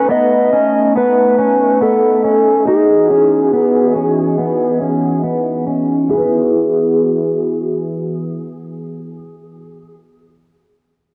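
A dreamy, ethereal dream pop excerpt in E major at 70 BPM opens at once with a swirling, detuned sawtooth analog pad carrying phaser and chorus, a twangy, slightly broken-up guitar picking chorus-soaked arpeggios through analog delay, and a dark, overdriven slide guitar singing the melody up front. A filter sweep runs through the first 6.1 seconds as the harmony moves from B7 to Emaj7, then settles on E for a new section. A moderate hall reverb wraps the gritty hardware recording in an airy glow.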